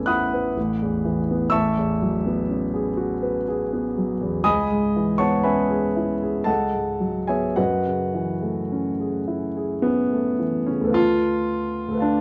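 A dark, mellow concert grand piano plays alone from the start in this nocturnal, wistful fragment of a longer impressionist solo piano piece, drifting in a rubato 3/4 at about 52-63 BPM in F# dorian through lush chords like Amaj9, C#m9 and F#m9, its deep bass and audible action noise kept up front and intimate under light reverb before the harmony shifts to a shadowy Dm6 at 11.0 seconds.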